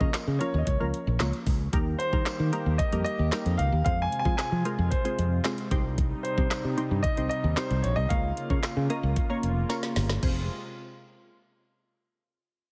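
Bittersweet yet energetic, this dance-pop excerpt in F minor moves at 113 BPM in a straight 4/4, cut from a longer piece. A concert grand piano with a deep low end carries the melody, while a glassy, crystalline wavetable pluck with a fast attack, short decay, chorus and sidechain pumping fills in the accompaniment. Up front, a punchy, direct fingered electric bass pumps alongside a produced R&B drum kit with a knocking kick, woody snare, metallic hats, handclaps and crash cymbal, and a jingly tambourine sits close and dry in the background. At 1.7 seconds a smooth, warbling vintage analog pad enters with soft, sustained chords behind the mix, as the harmony moves from Bbm/Db through Eb, Fm and Cm. A drum fill at 9.7 seconds leads into a new section landing on Fm at 10.2 seconds, all under light reverb and a heavily compressed, radio-ready sound.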